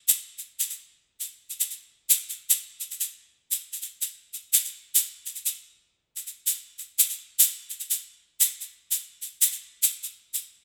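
West African traditional music with a flowing, warm mood in a straight 12/8 feel, cut from a longer piece, featuring a grainy, bright acoustic tube shaker placed up front in a small, dry room, playing from 0.1 to 10.4 seconds.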